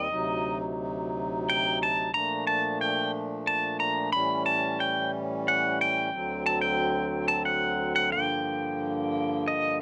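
Melancholic and reflective, this short folk passage cut from a longer piece moves at 90 BPM in an unhurried 3/4 with a straight feel. A pedal steel guitar carries the melody high in its range, its electric, clean tone compressed and shaped by fingerpicks, slide and volume swells, sitting up front in the mix. Beneath it, a hand-pumped harmonium holds sustained chords from the low register upward, its reedy, nasal voice carrying an audible breathing quality and also placed up front. Both parts play together throughout the full 9.8 seconds, moving through D7b9, Bbmaj7, A7, D7 and Gm7. The sound is that of a home recording on cassette tape, with a moderate studio ambience lending a modest sense of room around the two instruments.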